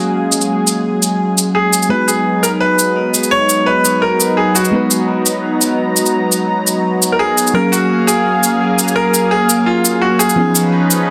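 Liquid drum and bass at 170 BPM in G# dorian, this dreamy, lush fragment is cut from a longer piece and drifts between F#maj9 and G#m7 before touching C#9 near the close. A thick, detuned sawtooth unison pad holds sustained chords up front with a slow attack, a vintage warble and chorus, while a soft, round FM electric piano fills in alongside it, its dark, decaying tone coloured by chorus, a low-pass filter and digital delay. A filter sweep on an analog synth pad runs through the whole passage. The shaker enters at 0.3 seconds, sampler-style and pitched up, sounding gritty and compressed as if re-recorded in a large room. At 1.5 seconds a brilliant, open grand piano takes the melody, short in sustain and touched with digital delay. A moderate plate reverb surrounds the mix, and the master is dense and heavily limited in a modern style.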